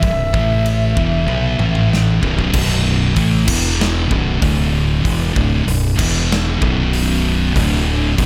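Stoner and doom metal at 96 BPM in B minor, brooding and hypnotic: a hollow, airy clay alto ocarina with vibrato and tape echo sings a brief mellow line until 1.9 seconds over two thick, dark fuzz guitars grinding out a low picked riff, one set back in the mix, while a growling, overdriven fingered bass sits up front beside a big-room acoustic rock kit with a punchy kick, medium-tuned snare and bright cymbals, whose fill from 1.3 to 2.5 seconds ushers in the second section.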